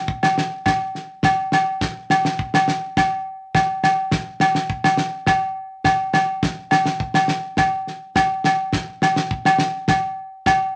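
Built on a straight 4/4 groove, this joyful, carefree highlife excerpt sets a damped 70s drum kit, with its tight kick, fat snare and rolled-off top, up front beside ringing, close agogo bells that enter at 0.2 seconds, all touched by light reverb.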